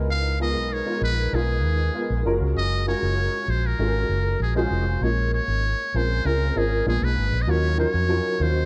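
Polished 1980s jazz-funk pop with a slick, bittersweet mood, this short cut sets a buzzy metal-muted trumpet melody with light vibrato over a dark, intimate baby grand piano with audible action noise and ensemble chorus, anchored by a round, foam-muted fingered electric bass, all up front in a small room with light reverb as the harmony moves from Db13 and Gbmaj9 into Bbm7, Bb7b9 and Ebm7 after 5.0 seconds.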